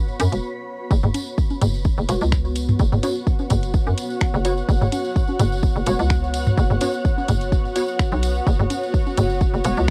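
Hypnotic and quirky, this minimal techno excerpt at 127 BPM with a light 16th-note swing opens on a blurred granular cloud pad pumping against the sidechain, jingly tambourine, metallic house hats with finger snaps, and a hollow, bouncy FM bass up front, then after a brief stop from 0.4 to 0.9 s drops into a punchy electronic kick, dry tape-tinged toms and congas, and, from 2.1 s, a muted, detuned dub chord stab carried on ensemble chorus and tape echo, all held in a light reverb with the character of a home cassette recording.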